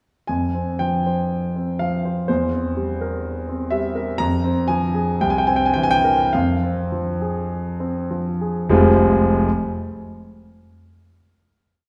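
A concert grand piano carries this short romantic character piece alone, its tone warm and natural with a deep bass and an up-front presence across a range from F1 to Bb5. Set in F minor in 2/4 at a slow, rubato 48-64 BPM, the music feels stormy yet bittersweet. A single-line melody sings above inner broken chords. The harmony moves from F5 through C7/E and Fm, then back through C7 to Fm, while the tempo slows from 3.2 to 8.7 seconds. A final chord arrives at 8.7 seconds and rings out in a wet recital-hall reverb that gives the sound the spacious bloom of a church or concert hall.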